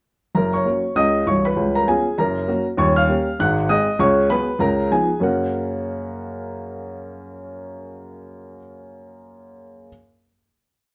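Stride piano jazz in F# major, playful and swinging at 197 BPM, with a baby grand piano playing solo from 0.3 to 9.9 seconds. The clear, open piano sits up front, carrying the tune in octaves over a stride bass through a turn of dominant chords. At 5.2 seconds it arrives on a closing F# chord that rings into a wet studio reverb.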